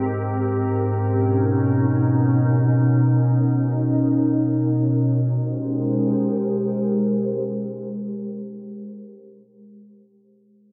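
Amapiano in free time, this relaxed excerpt rests entirely on a glassy FM pad that holds sustained chords from 0.0 to 8.7 seconds, its slow attack, long release, ensemble chorus and built-in reverb giving it an ethereal, mellow glow up front. A filter sweep colours the pad through the opening 5.4 seconds as the harmony moves from Abmaj9 to Bmaj9 and returns to Abmaj9 at 5.4 seconds. The dry surrounding room and dense, heavily limited modern master keep the sound close and full.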